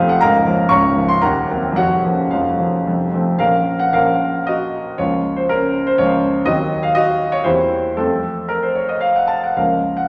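A clear, up-front concert grand piano carries this passionate, stormy romantic character piece alone, moving in a rubato 3/4 at roughly 106-127 BPM in Bb minor and reaching from a deep bass up into the treble. Its open, short-sustained tone sits in a wet recital hall reverb. Across the brief passage, cut from a longer piece, the harmony pulls through Bb minor, half-diminished and diminished colours toward F major. A second phrase begins at 3.4 seconds and drives through C7 to F before settling back on Bb minor at 9.6 seconds.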